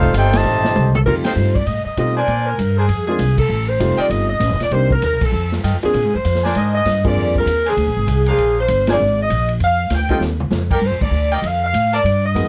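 A brisk swing at 196 BPM in 4/4 drives this brassy, energetic big band jazz excerpt, with a woody pizzicato upright bass up front and a drum kit with a punchy kick, crash, ride, hi-hat, snare and toms setting the pulse, and a drum fill arriving just before the saxophone section carries the melody from 0.9 seconds. A brief opening trumpet section melody with light vibrato, a soft-attacked trombone section in the background and a very quiet, bright saxophone section holding chords give way to the vibrato-rich saxes, while tight, brilliant trumpet stabs punctuate from 1.2 seconds and an intimate grand piano with audible action noise accompanies over chords such as F9, Bb9 and Cm7. The sound is dry and coloured by worn, warbling old cassette tape with pitch drift.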